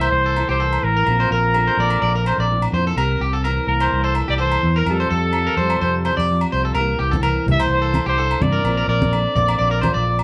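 A live-room studio sound with moderate ambience captures a carefree, joyful highlife guitar band at 127 BPM in C mixolydian, with a light 16th-note swing, in an excerpt cut from a longer piece. Up front, a clear, vintage-toned trumpet carries the melody with vibrato in a jazz style, over a round, punchy fingered electric bass and a bright, twangy electric guitar at the edge of break-up playing picked arpeggios, while a fingerpicked steel-string acoustic guitar with fresh strings fills in the accompaniment. Ringing agogo bells sit in the background throughout, and congas with a thin-skinned, hard-handed snap join at 7.1 seconds as the chords move between C7, Bbadd9 and Fadd9.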